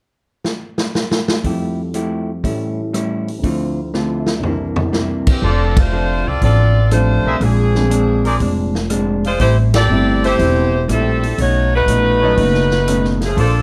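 Big band swing jazz in F major, brassy and energetic, moving at 121 BPM in 4/4 with a strong swing feel, in an excerpt taken from a longer piece. The natural-sounding drum kit opens with a fill at 0.4 seconds, its punchy kick and medium-tuned snare sitting up front alongside hi-hat, ride, crash, rim clicks and toms. At 1.4 seconds a dark, mellow grand piano with deep bass and a clean, picked hollow-body electric guitar join as accompaniment over chords such as Fmaj9, A7 and Dm7, with another drum fill arriving before the full band takes over. An edgy, close-miked saxophone section enters at 5.3 seconds to carry the melody with light vibrato, and from 5.4 seconds a distant, roomy trumpet section adds tight stabs while a woody, growly pizzicato upright bass drives the low end, with band accents landing at 5.7 and 9.6 seconds. The production is dark and warm with light reverb, keeping drums, bass and saxophones close while the trumpets sit farther back.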